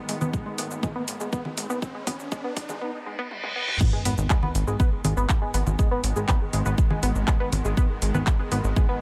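A punchy, tape-warm electronic kick sits up front in this dramatic, cinematic melodic techno excerpt, alongside a layered kit of metallic hats, congas, crash cymbal, handclaps, shaker and toms, a funky, plucked sawtooth-and-square analog bass, a tight, driving detuned synth arpeggio with chorus, phaser, delay and sidechain pumping, a bright, morphing wavetable pad in the background and a very quiet, warbling swarm of a drone, while a background riser, reverse cymbal and sub drop carry a filter-swept build-up with drum fills into the drop at 3.8 seconds.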